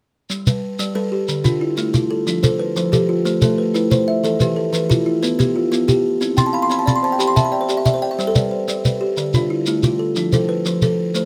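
A buzzing kalimba with a bright, hollow-box twang rings up front from 0.5 seconds, its arpeggios weaving into a darker, smooth solid-board kalimba in a hypnotic, warm southern African traditional excerpt built on a mbira-style interlocking cycle in a straight 12/8. A grainy, mellow shekere sits close alongside them, while the darker kalimba adds a fill from 6.2 to 8.2 seconds over a cycling progression that moves from G through Dm, F, Am, Em and C. The sound is dry and intimate, with detailed close microphones capturing every woody pluck.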